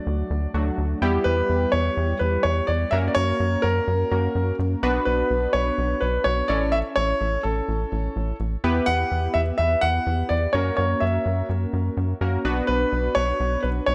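Driving and nocturnal, this synth-pop excerpt sets a clear concert grand piano melody with delay and audible action noise over detuned analog keys thickened by chorus, while a rubbery, hollow square-wave bass sits up front from 0.1 seconds, all in a moderate recital hall reverb as the chords move from D through Em, F#, Bmadd9, A, Emadd9 and F#7 before settling back on Bmadd9.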